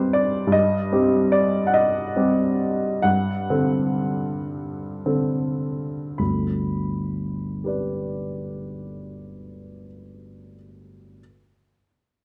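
In a rubato 6/8, its dotted quarters moving at 32-51 BPM, this lyrical and passionate romantic character piece for solo piano in G major slows down through its opening 6.2 seconds, passing from C minor over G to D7 over G before settling on G. The upright piano sounds clear, woody and polished, spanning G1 to B5 and sitting up front in close, detailed miking with a light touch of reverb. A new passage begins at 6.2 seconds in this short fragment cut from a longer piece.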